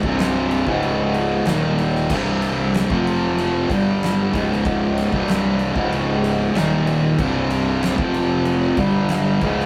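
A straight 4/4 pulse at 94 BPM drives this brooding, sludgy stretch of stoner and doom metal in C phrygian, cut from a longer piece and running 9.7 seconds. An up-front, double-tracked fuzz guitar grinds out a distorted riff through power chords on C, Db, Eb, F and G, with a growly overdriven fingered bass underneath and an oversized low-tuned kit of boomy kick, fat snare, dark crash and ride cymbals filling a big, pumping room. The rough rehearsal-room sound carries tube saturation and light reverb, giving the drums a gritty edge.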